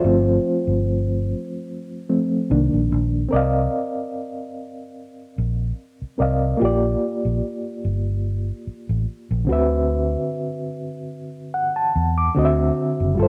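A gritty, reedy electric piano with medium tremolo, overdriven through a combo amp, sits up front and takes a solo over the first 3.3 seconds of this short cut from a smooth, silky 1970s-style soul piece at 73 BPM with a gentle 16th-note swing. A dark, round, foam-muted fingered electric bass punches along beside it throughout, while the harmony moves from G9sus4 and Cm7 through Cm11, Bb6 and D13 to D9. Moderate spring reverb and digital ambience give the cassette home recording a lush, intimate feel.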